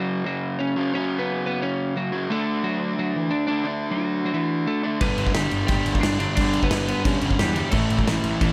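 A dark, slightly broken-up lead guitar melody and an up-front, overdriven garage guitar riff open this rowdy, energetic punk rock excerpt at a straight 177 BPM, moving from F#5 to D. At 5.0 seconds the band arrives on a G chord, heading to A: a sludgy distorted guitar and a growly, fuzz-soaked picked bass sit in the background, while a loose acoustic kit with a tight kick, crash and medium-tuned snare pumps up front in a small room, all under light reverb.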